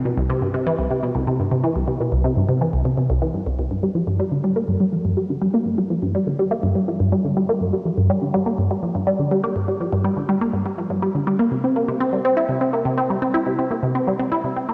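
A lone, resonant pluck synth opens this mysterious, expansive ambient piece at 0.1 s and carries it alone until 14.7 s, in a passage cut from a longer work. Its squelchy, detuned sawtooth tone has a fast attack and short decay, shaped by a moving notch filter, yet it sits mellow and up front. Chorus, phaser and delay color the plucks, and a lush hall reverb with a long tail opens the space around them. The notes span from C2 up to E4 over a straight 4/4 pulse, and the music moves into a new section at 3.7 s. The whole recording carries the worn character of old cassette tape, with a warbling pitch drift that adds to its mysterious mood.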